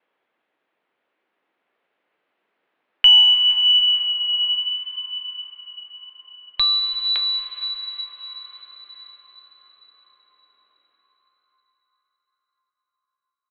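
Crotales ring out alone through this 11.9-second cut from a longer piece of calm, spacious world meditation music in free time, their high, bell-like shimmer sitting up front yet carrying a dark, smooth edge from the brass mallets. A diffuse ambient delay trails each stroke into a huge, wet reverb, while a worn, warbly cassette-tape character with pitch drift and a narrow telephone-like tone gives the sound an aged, hazy feel. The music shifts into a new section at 7.2 seconds, which lasts until 10.9 seconds.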